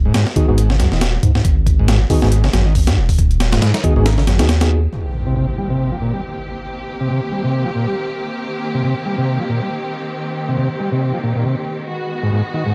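Gritty and swaggering, this breakbeat passage cut from a longer piece moves at 138 BPM in C minor with a swung 16th feel, opening on a compressed, thumpy sampler-style drum kit, a deep, saturated sub bass and mellow tine electric piano stabs coloured by vintage 12-bit sampler crunch and digital delay. A reedy combo organ riff with heavy vibrato runs through a low-pass filter across the whole passage, while by 4.9 seconds the drums, bass and piano have dropped away for an electronic impact and a bowed studio string section holding expressive sustained chords with portamento and sidechain pumping. The dark production sits in light reverb, moving from Abm7 to Cm7 and back to Abm7 at 11.9 seconds.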